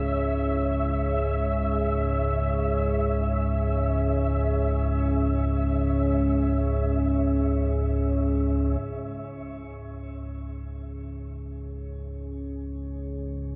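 Ominous and cavernous, this dark ambient drone excerpt in C# minor drifts in free time, with a deep rumbling drone holding the low register beneath a detuned, moody pad of sustained chords, both up front and steeped in a wet cathedral reverb. A flickering, grainy texture sits high above them on a single note with shimmer reverb until 8.8 seconds, after which the drone and pad fade in through to the close at 13.6 seconds.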